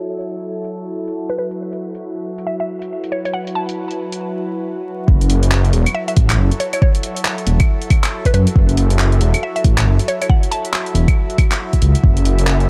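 A menacing, detuned saw bass arrives up front at 5.1 seconds alongside a deep, overdriven electronic kick, lending this ghostly, wistful future garage excerpt at 138 BPM in F# minor its weight under a swung 16th-note feel. Before that, a filter sweep carries the opening, where a warbling, nostalgic tape-like pad holds sustained chords with chorus, reverb and sidechain pumping. A woody, round mallet-like pluck carries the melody through chorus, cassette tape and analog delay until 11.1 seconds, while an overdriven deep house kit of claves, handclaps and hi-hat plays over a digital ambience of vinyl crackle, the harmony moving from F#m7 to C#m.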